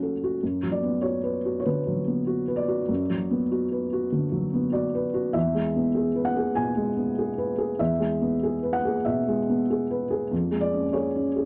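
Neoclassical minimalist piano, wistful and intimate, where a solo felt-muted upright piano plays with rubato at 97 BPM in 4/4, its soft, boxy, dark tone and short sustain sitting up front with audible action noise in a dry, close 1970s-style studio room, moving through Bm/F#, E and C#/E# across this 11.5-second excerpt cut from a longer piece.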